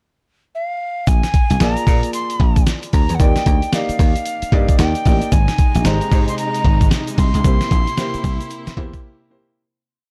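A dark, dry production frames this confident, slick new jack swing R&B piece at 113 BPM, where a breathy alto recorder carries a motif-based melody over a gritty, hard-swung sampler drum beat with a thumpy kick, a punchy foam-muted slap bass line full of ghost notes and chromatic approach notes, syncopated grand piano stabs, a grainy tube shaker in the background, and smooth bowed strings entering at 5.3 seconds as a sustained pad through a fade-out that begins at 7.4 seconds over chords moving from Bb7 through Ebmaj7 and Abmaj7 to C7.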